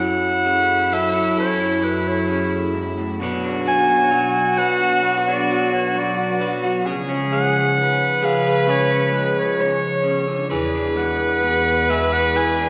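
A clear, close-miked clarinet carries the melody up front in a classical style, joined by a dark, woody violin with vibrato playing a bowed second line in this reflective, melancholic folk fragment at a slow 66 BPM in F# minor. Beneath them, a bright, twangy electric guitar through a small old amp adds slightly broken-up, lo-fi picked accompaniment. A brassy, detuned analog pad with chorus sustains soft-attack chords over F#m7, Bmadd9, C# and E7, all within the long reverb of a church or concert hall.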